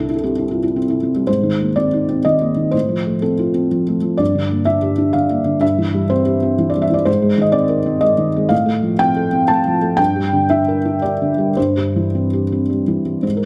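A felt-muted upright piano opens alone on a C chord, its thick felt giving the tone a soft, dark, mellow cast, with the mechanical noise of the action clearly audible. This is an intimate, melancholic piece of neoclassical minimalist piano in 3/4, moving with a rubato feel somewhere between 104 and 129 BPM. From 1.3 seconds the harmony settles into a repeating cycle of Abadd9, F/A, Gm and C/G, which turns over twice before the fragment ends. The piano ranges from C2 up to A5 and sits up front, natural and intimate. A moderate recital-hall reverb surrounds it, lending a gentle sense of space around the muted attack. The recording is a 13.5-second fragment cut from a longer piece.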